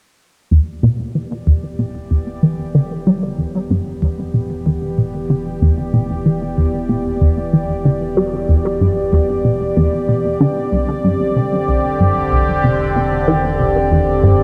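A bright, evolving sawtooth pad fades in at 0.5 seconds, holding sustained chords with a soft attack, long release and chorus. Alongside it runs a squelchy, resonant filter-plucked riff in the low register, treated with chorus, phaser and analog delay. This cosmic, mysterious ambient fragment moves at 94 BPM in E minor, shifting from Em7 to Csus2/E at 10.7 seconds, and a lush hall reverb soaks the dreamy mix, with the juicy pluck sitting a little louder than the detuned pad.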